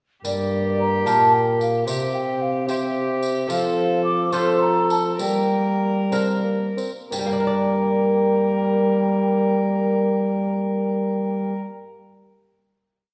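A renaissance-style consort dance in G minor and a lilting 6/8, its courtly yet rustic mood carried by a hollow, pure-toned baroque flute with vibrato, while a nasal, gut-strung viola and a mellow bassoon play chords in the rhythm of the tune and a close, up-front trombone holds a warm sustained bass with passing notes. A delicate fingerpicked lute with double strings marks bass and chords on the beats, and a jingly tambourine plays a dance rhythm until 7.4 seconds. The tempo slows from 2.7 seconds before the ensemble settles on a long final chord at 7.1 seconds, all bathed in the wet reverb of a recital hall.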